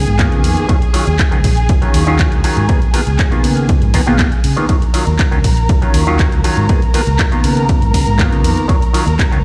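A mellow, nasal clav opens this short fragment of groovy, sensual filtered disco house, its hollow tone colored by a phaser and a gritty 12-bit sampler edge, alongside veiled, muted strings holding bowed chords with vibrato and a round, dark fingered electric bass. The analog drum machine joins at 0.1 seconds with handclaps, hi-hat and ride cymbal, and a punchy electronic kick sits up front from 0.2 seconds, driving a straight 4/4 at 120 BPM in Eb minor. Sidechain pumping makes the clav, strings, bass, hats and cymbals breathe against the kick. After a brief Db13 at the start, the harmony moves between Ebm9 and Db13 every two seconds. The whole track sounds as if played through a big sound system in a bare room, with a large studio reverb adding depth.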